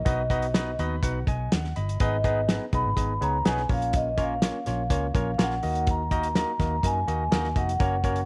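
A straight 4/4 groove at 124 BPM drives this short, danceable slice of uptempo 1960s-style soul, played on a cloth-damped acoustic drum kit with a fat snare, tight kick and hi-hat, its rolled-off top sitting up front. Underneath, a vintage fingered electric bass, foam-muted and amped, supplies a dark, round low end. A barky tine electric piano, lightly overdriven through a combo amp, adds bright accompaniment and plays a fill from 0.5 to 2.0 seconds. On top, a vibraphone with soft mallets carries the melody in a metallic, ringing, mellow voice with a slow motor vibrato. The harmony moves from B to G#m, A#m and D#m, tuned to A4 = 444 Hz, and a small room reverb surrounds the performance, which has a warm feel.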